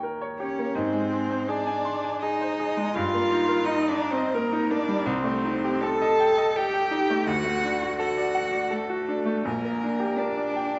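Classical piano trio in an elegiac, solemn slow romantic movement at 82 BPM in a rubato 3/4, where a bright, brilliant baby grand piano sets up the accompaniment from 0.0 s, a rich, smooth violin carries the melody with even vibrato from 0.4 s, and a focused, up-front cello sings the second line, the harmony turning from Eb major to G minor at 5.1 s inside a reverberant recital hall whose sound tops out at 7.8 kHz, in this brief excerpt cut from a longer piece.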